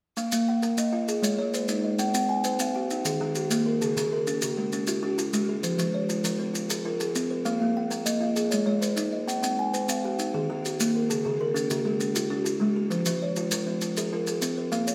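Warm and hypnotic, this southern African traditional piece turns an mbira-style interlocking cycle in 12/8 at 132 BPM, its chords running Bb5, Ab, Cm, Eb, Db and Fm before repeating at 7.5 seconds, tuned slightly flat to A4 = 436 Hz. A buzzing kalimba sits up front with a woody, ringing thumb-plucked tone, while a second, darker and smoother kalimba weaves its own arpeggios through the same hollow-box resonance. Grainy, close maracas keep a mellow pulse underneath, and the trio plays live together in a moderately reverberant stone room in this short section cut from a longer piece.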